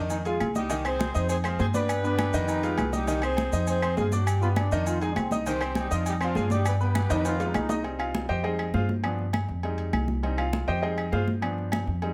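A bright, up-front grand piano and a dark, woody pizzicato upright bass open this danceable, passionate salsa excerpt at 201 BPM, joined almost at once by ringing agogo bells and timbales, hard-handed, high-tuned congas, grainy maracas, dry claves in the background and a distant trombone section with vibrato, while a warm, punchy, tight horn section carries the melody until a drum fill at 7.1 seconds leads into a brilliant piano solo from 7.8 seconds over cycling Fm7, G7 and Cm chords.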